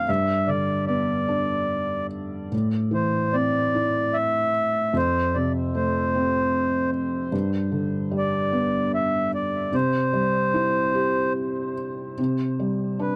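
A reedy, round accordion carries the melody through this short, gentle lullaby cut, its up-front, close-miked tone touched by tape echo. Beneath it, a felt-muted upright piano provides dark, intimate accompaniment in triple time, with the soft thud of its action audible as the chords move from G through Am, F and G to C, settling on Csus2 at 12.2 seconds. The innocent children's piece sits in a dry, close 1970s-style studio sound with a moderate booth ambience.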